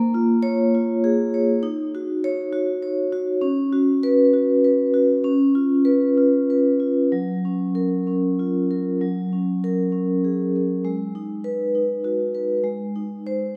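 Warm and flowing, this contemporary classical fragment for solo vibraphone moves in a rubato triple metre, its medium mallets drawing a metallic, ringing tone shaded by a slow motor vibrato. The instrument sits up front, yet a wet recital-hall reverb places the listener further back in the room as seventh chords drift toward a settled F#maj7. At 9.0 s a new section opens on F#add9 and moves through G#m7 to G#, where the fragment is cut off at 13.6 s.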